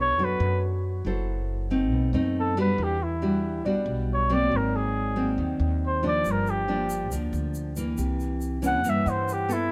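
A straight 4/4 bossa nova groove at 138 BPM sets a relaxed, sophisticated mood in this short cut from a longer piece, as a clear, vintage flugelhorn with vibrato takes an up-front jazz solo over fingerpicked nylon-string guitar with audible finger squeak, woody pizzicato upright bass, and a warm concert grand piano in the background that sits out from 6.4 to 9.1 seconds, while a grainy, bright egg shaker joins at 6.2 seconds, all framed by light reverb over rich chords such as Bm9, B7b9 and C7b9.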